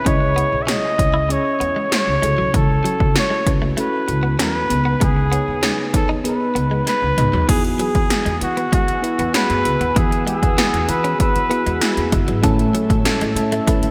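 A straight 4/4 groove at 97 BPM anchors this nostalgic, moody 1980s-style pop excerpt, driven by up-front electronic pad drums with a punchy kick, metallic hats and gated reverb on snare and toms, plus a drum fill from 6.9 to 7.5 seconds, while a woody, growly pizzicato upright bass holds the low end. Over a soft, round FM electric piano treated with chorus and phaser and a bright, clean direct-recorded guitar riff in the background, a flugelhorn carries the melody with light vibrato, scooped notes and delay, moving through C#m, F#m7 and G#m/C#. At 7.5 seconds the harmony opens to Eadd9 and a smooth, detuned sawtooth pad enters with long sustained chords, all set in a lush hall and a bright digital 1980s-style production.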